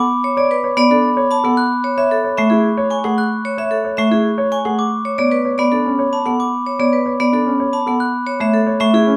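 A ringing vibraphone, struck with hard mallets and played with its motor off, carries the melody of this meditative, hypnotic piece of minimalist classical pattern music, its airy tone sitting up front. Above it, a bell-like glockenspiel played with brass mallets spins dark, smooth arpeggios, opening the passage at 0.0 seconds. A polished grand piano adds its own arpeggios in the middle register, while a woody marimba with padauk bars, close-miked and dry, supplies a full, percussive accompaniment low in the texture as the loudest part. The music moves in a steady three-beat metre with a straight feel, circling from Bm7 to A and back to Bm7 before settling on A6. A moderate large-studio reverb gives the room some space, and the passage, cut from a longer piece, ends at 9.2 seconds.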